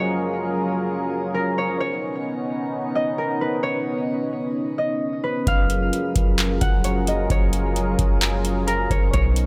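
Blissful and floating, this fragment of atmospheric cloud-rap moves at 131 BPM in 4/4 with a half-time feel, set in F# major and tuned to A4 = 441 Hz. From the start, a thumb-plucked concert harp carries the melody with a mellow, ringing acoustic tone and a trail of delay, sitting up front over a moody analog pad built from detuned sawtooth and triangle waves with a sub octave. That pad holds sustained chords with a slow attack, thickened by chorus and pulsing with sidechain pumping, as the harmony shifts from F#maj7 to Badd9 and back to F#maj7. At 5.5 seconds a warm 808-style bass arrives, a boomy sine with a noise layer, fast attack and a decaying tail. At the same moment, a booming analog drum machine enters with a deep kick, metallic hi-hats and handclaps, re-recorded in a small room and placed up front. A digital ambience surrounds the whole arrangement, lending it a hazy, weightless space.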